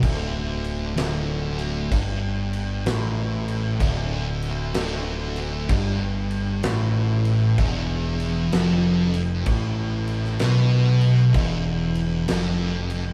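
A swung eighth-note feel sits on a slow 4/4 pulse in this sludgy, heavy stoner and doom metal passage, cut from a longer piece. Two thick fuzz guitars play a low, distorted riff together, sitting in the background with a warm, picked tone, moving from a D5 power chord to E5 at 7.6 seconds. A growling picked electric bass sits up front, bright and overdriven with a direct, amped punch. A big acoustic rock drum kit underpins the riff with crash cymbal, a fat snare and a punchy kick, its sound dark and smooth in a large room. The whole band plays live together in one room throughout the 13.1 seconds, and a wet studio reverb adds depth.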